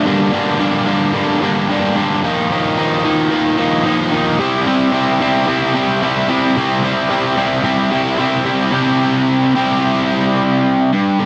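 In a straight 4/4 pulse, this moody, restless rock fragment, cut from a longer piece, features a lone distorted electric guitar, bright, picked and double-tracked, sitting up front in a moderate studio ambience as it moves through Gm, Ebsus2 and C before shifting into a new section at 8.7 seconds.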